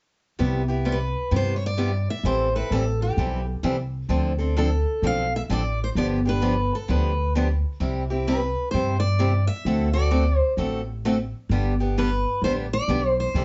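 Acoustic string swing in the jazz manouche style, this swinging, charming fragment of a longer piece pairs a bright, fresh-stringed picked guitar comping through a Cmaj7, Am7, Dm7, G7 progression (with audible finger squeak) and a woody, thumpy pizzicato upright bass on gut strings, both starting at 0.4 seconds, with a boxy parlour guitar that picks the melody from 0.9 seconds with a slapback echo, all set in a moderate studio reverb heard from further back in the room with a dulled top end.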